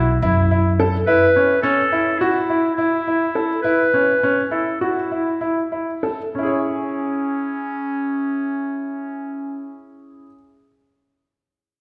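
Contemporary instrumental chamber music in an uneven 9/8 meter, this restless, urgent excerpt in C# minor moves at roughly 191-214 BPM in eighths, with a straight feel and tuning set slightly low at A4 = 439 Hz. A bright, vintage-toned clarinet carries the solo melody in a classical style between C#4 and B4, sitting up front in the mix. A clear concert grand piano, open and full of deep bass, supports it with arpeggios ranging from C#4 to C#5. An acoustic upright bass with steel strings adds a woody, pizzicato line between B1 and F#2, but it plays only for the first second before dropping out. The harmony shifts from B7sus4 to a rootless F#7 with the third omitted, and the music slows from 1.6 to 6.3 seconds before a new section settles on C# minor at 6.3 seconds. A wet recital hall reverb surrounds the trio, giving it the spacious sound of a church or concert hall as this cut from a longer piece closes.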